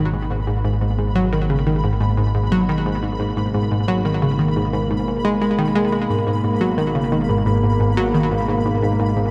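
This excerpt of expansive, hypnotic ambient space music opens with a bright, round analog pluck placed up front. The pluck plays a sequencer-driven riff between G#2 and G#3, its fast-attack, decaying notes carried by chorus and delay. Beneath it, a sweeping resonant pad fades in across the full 9.3 seconds, with detuned, sustained chords from B2 to D#4 whose slow attack and filter swell give a warbling, vintage character. A fat, thick analog bass holds G#1 with tube saturation, while a faint pulsing gated texture on B5, tempo-synced and soft, also fades in with its own chorus and built-in reverb. The harmony rests on a single G#madd9 chord in G# minor at 88 BPM in a straight 4/4, and a wet cathedral reverb with a 4.9-second decay sets the music in a vast, echoing space.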